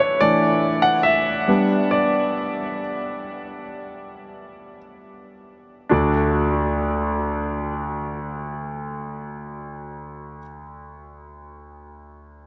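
A straight 4/4 pulse carries this tender pop fragment, easing into a slowdown over its first 5.9 seconds. A concert grand piano, the only part, provides the accompaniment from 0.0 to 12.5 seconds, its clear, polished tone sitting up front with a deep bass and short sustain. The harmony moves from Asus4 to G and then settles on D at 5.9 seconds, where a second section begins after the opening solo passage. A huge, wet ambient reverb with a long tail soaks the mix, giving the emotional playing a dreamy quality. Cut from a longer piece, it feels like a brief, tender moment.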